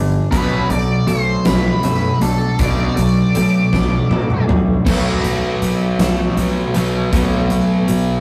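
A sludgy, overdriven guitar riff sits up front in this brooding, cathartic quiet-loud alternative rock excerpt at 53 BPM in 6/8, joined by bright twangy twelve-string arpeggios with harmonic tremolo, a woody, thumpy upright bass, a dark octave-fuzz lead melody from 0.3 to 4.4 seconds, a huge arena drum kit with a fat snare and punchy kick whose fill runs from 3.7 to 4.9 seconds, and a second, darker overdriven riff in the background from 4.8 seconds, as the harmony moves from Bm7 to B5 in a rough, saturated rehearsal-room sound.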